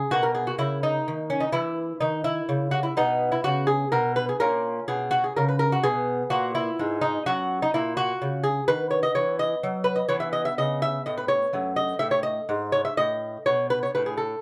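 Classical baroque-style dance for solo lute in B major, radiant and serene, moving at 84 BPM in a rubato 12/8 as the delicate, fingerpicked nylon and double strings, some doubled at the octave, ring bright and up front in light reverb from Bmaj9 through G#m11/A# toward D#dim/F# across this 14.4-second portion of a longer piece.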